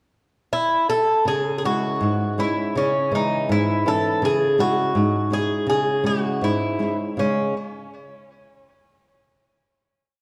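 An up-front Irish bouzouki opens this brief, mournful fado-style ballad at 0.5 s, its metallic double strings picking out a longing, song-like motif through a touch of tape echo. A bright, fingerpicked flamenco guitar joins at 1.3 s with an oompah of bass notes and chord figures, a finger squeak audible, all in a free, rubato two-beat feel. A lingering recital-hall reverb and a dark production carry the piece to its final chord at 7.2 s.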